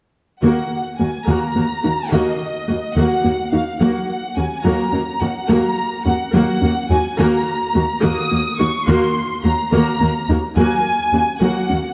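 Moving in a slow, straight 6/8 at 71 BPM counted in dotted quarters, this tense, vast cinematic passage in Eb dorian is cut from a longer piece and runs from 0.4 to 11.9 seconds. A lush violin section carries the melody high between Eb5 and Eb6, its bowed tone focused and smooth-topped with vibrato, sitting up front. Just beneath it, a close, up-front viola section supplies bowed accompaniment with vibrato, while a rich, even cello section anchors the bass on Eb2. Tucked in the background, a soft, round synth pluck with a fast attack and short decay spins dark arpeggios, colored by chorus and digital delay. The harmony moves slowly from Ebm to Gb over Eb, back to Ebm, and on to Gb, all bathed in the generous wet bloom of a scoring stage.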